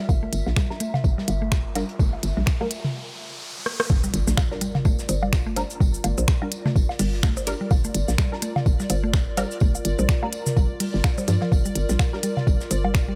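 A soft, tape-warm electronic kick sits up front in this clinical, hypnotic minimal techno excerpt at 126 BPM in G dorian, joined by a hollow, bouncy FM bass with tube saturation, a woody mallet-like synth pluck riff with dub echo, muted sawtooth dub chord stabs through phaser and ensemble chorus, a warbling, nostalgic lo-fi pad, a clicky minimal drum kit with cabasa, finger snaps and rim click, a faint high-passed soul kit with hi-hat, snare and tambourine, and layered electronic woodblock, toms and percussion blips. A riser leads to the drop at 3.9 seconds, where an impact hits and a bright, pulsing gated texture enters in the background, with the bass, pluck, pads and gated texture pumping against the kick in a dry, close mix.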